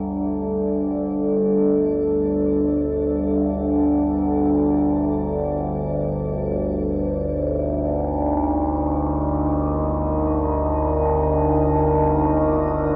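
Floating in free time, this ominous dark ambient drone fragment fades in on a low, resonant, overtone-sweeping synth drone with evolving overtones, chorus and its own reverb, beneath a deep, moody analog pad of sustained chords, moving from G5 to Eb5 at 7.1 seconds and treated with chorus, phaser and shimmer reverb, inside a huge, wet reverberant space with a cassette-tape character.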